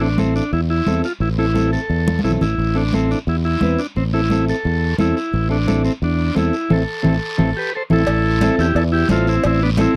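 Cumbia with a danceable, driving feel, this short cut from a longer piece rides a steady straight groove on a single minor chord. A vintage, buzzy combo organ carries the melody up front, while a dark, clean, fingered mellow electric guitar plays accompaniment in the same middle register. Beneath them, a punchy, round fingered electric bass sits direct and amped at the front of the mix, the loudest part. Thick-skinned, damped congas sit close and dry in the background, and a raspy guiro sounds distant and roomy. Drum fills land at 2.1 and 7.0 seconds, and a band accent from 6.7 seconds leads into a new section at 8.1 seconds, where a ringing metal-shell cowbell joins, all in a close 1970s-style studio sound with light reverb.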